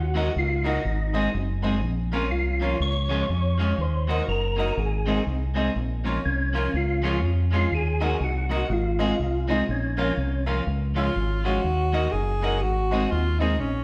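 A bouncy, upbeat ska groove in Db major swings along at 122 BPM, where a punchy, round fingered electric bass sits up front under twangy clean electric guitar with tape echo and a woody, slightly detuned upright piano throwing stabs, while a mellow tonewheel organ with chorus vibrato and fast rotary speaker carries the melody until 10.4 seconds and a smooth, up-front alto saxophone takes a solo from 11.0 seconds, all inside a wet stone room in this excerpt cut from a longer piece.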